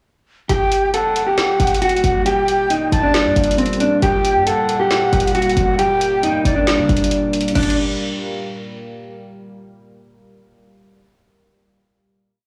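Menacing and brooding, this short trap hip hop piece in G harmonic minor moves at 136 BPM with a half-time feel, built on a looping hook from 0.5 seconds that resolves into a final chord at 7.6 seconds. A mellow, clean electric guitar carries the up-front, sample-like melody with tape echo, while a breathy, reedy concert flute adds a sparse counter-melody above it, and a deep, detuned sawtooth pad with chorus enters at 1.0 seconds to sustain dark chords beneath. A punchy 808-style bass with pitch slides and long sub-bass notes runs under a woody-snared trap kit with metallic hats and fast hi-hat rolls, all set in a lush hall ambience on a blown-out, overdriven recording.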